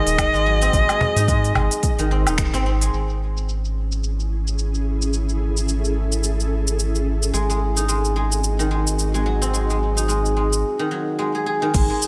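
Earthy and mystical, this organic downtempo piece at 109 BPM in G# phrygian dominant opens with a rich, bowed kamancheh melody full of vibrato and gritty 12-bit sampler texture, set over silvery fingerpicked guzheng arpeggios, a round, dark analog bass, a tape-warm electronic kit with crisp filtered hats, cabasa, snaps and woodblock, a deep electronic kick and a snappy, close cajon played with hard hands, before an ethereal, detuned pad with chorus, tremolo and sidechain pumping enters at 3.8 s and sustains beneath the ringing guzheng through a break from 10.6 s.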